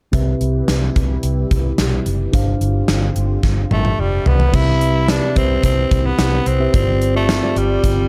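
A raspy tenor saxophone takes the melody from 3.7 seconds, gritty and up front with vibrato and a digital delay, giving this short cut from a longer 1980s-style pop piece its glossy, nostalgic focus. Beneath it, a gated 80s drum kit drives a straight 4/4 at 109 BPM, with a tight kick, medium-tuned snare, bright cymbals and toms in a big gated room, and a drum fill runs from 3.4 to 4.5 seconds into the second section. A foam-muted fingered electric bass sits low, round and punchy, while a mellow tine electric piano plays clean accompaniment across the whole passage. A very quiet phased analog pad holds sustained chords with a slow attack and a detuned, swirling sawtooth character. The harmony in C major alternates Cmaj7 and G7sus4, and the production is dark and warm with light reverb and a sense of studio ambience.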